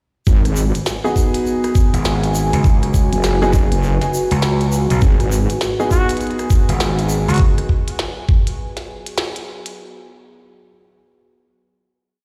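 This swaggering, funky glitch hop piece opens at 0.3 s on a G#m7 chord, with a deep, moody analog pad, a heavy detuned wobble bass, a knocking, tape-warm electronic kick and a grainy tube shaker all arriving together. Set at 101 BPM in 4/4 with a swung sixteenth feel in G# minor, the whole piece is one drop. It is driven by the up-front kick and a glitchy drum kit of tiny snare, clicky hats and rim clicks that is overdriven and full of edits. The wobble bass is saturated and chorused with a changing wobble speed, while a bright, punchy slap bass with overdrive adds chopped phrases, and the pad carries chorus and sidechain pumping. A worn baby grand piano supplies sparse, echoing, close-voiced chord stabs with pumping and delay, and from 5.9 s a mellow vintage trumpet plays short solo phrases on F#4 with delay. The mix sits in a bare stone room with light reverb, as if played on a big sound system.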